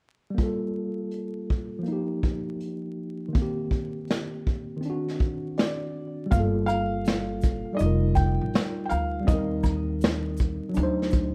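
Lo-fi hip hop with a nostalgic, melancholic mood, cut from a longer piece: a worn, slightly out-of-tune tine electric piano with overdrive, cassette tape and plate reverb sits up front beside a punchy, rolled-off vintage brush drum kit. A soft, felt-muted upright piano melody with analog delay enters at 5.6 s, and at 6.3 s a dark, woody pizzicato upright bass arrives with a compressed tube shaker and woodblock in the background, in a rough home demo mix dusted with vinyl crackle.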